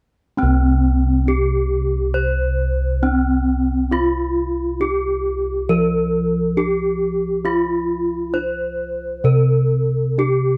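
Close, detailed microphones and little reverb put this short fragment of Javanese gamelan up front, with every ring and strike heard clearly. A bronze metallophone carries the melody from 0.4 to 10.6 seconds, its dark, smooth tone struck with a wooden mallet and shimmering with the beats of its paired tuning. Beneath it, bossed gongs hold the bass across the same span, their round, bright voices beating as they ring. Both instruments sit forward in the sound, their metallic resonance filling the close, dry space. In a straight 4/4 pulse and slendro tuning, the mood is serene, and the passage, cut from a longer piece, stays within a single section.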